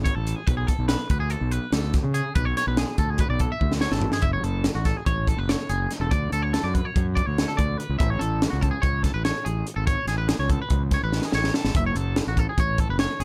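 Math rock and midwest emo in a wistful, playful 9/8, with bright, clean picked arpeggios on twangy electric guitar with subtle chorus riding over a growly, fuzz-overdriven fingered bass held up front and a crisp fusion kit with a high-tuned snare, punchy kick and pumping small-room sound, which drops fills at 3.6 and 11.1 seconds as the chords move through F#madd9, Dmaj7 and Amaj9 in a dark, dry production cut from a longer piece.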